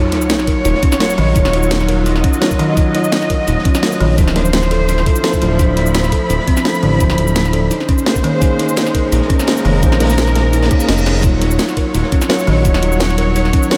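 Up front, a smooth gliding synth bass with a sawtooth-and-square tone and fast attack holds long portamento notes beneath a knocking, layered electronic kick, anchoring this lush, soulful liquid drum and bass passage at 170 BPM in Eb minor. A produced drum and bass kit adds a cracking snare, hi-hat and cabasa, while a second breakbeat kit sits in the background with a gritty, saturated, dark character and a rolled-off top. Over the rhythm, a mellow tine electric piano with delay and a kalimba playing short, woody, thumbnail-plucked arpeggios with delay sound above sustained chords from a bowed string section rich with vibrato. The harmony moves from Ebm9 through Dm9 and Bbm9 before returning to Ebm9 at 11.2 seconds. An electronic sub drop opens the passage, and a reverse cymbal arrives at 10.7 seconds as the kick briefly drops out, all bathed in a huge ambient reverb that gives the cut a dreamy, soaked sound.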